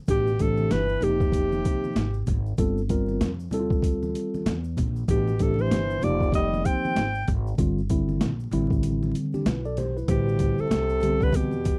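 A swung 96 BPM groove in 4/4, with 16ths pushed at 60%, anchors this mellow, nocturnal jazz-hop excerpt in A minor, cut from a longer piece. The boom bap sampler-style kit sits up front, pitched down, compressed and overdriven into a gritty sound with a thumpy kick, a high-tuned snare and hi-hat. Beneath it, a woody pizzicato upright bass with steel strings holds the low end, while tube shaker and congas, played with hard hands, sit distant in the background as if in a large room. A breathy alto saxophone carries the melody up front with subtone and light vibrato, joined by a close-miked trombone on a second line in the background. A mellow tine electric piano heard through its built-in speakers comps clean chords moving from Fm9 through Gm9, Dm9 and Am7, with a break at 8.8 seconds before a new section at 10.1 seconds. The whole take is dry and close in a 1970s studio manner, dusted with vinyl crackle.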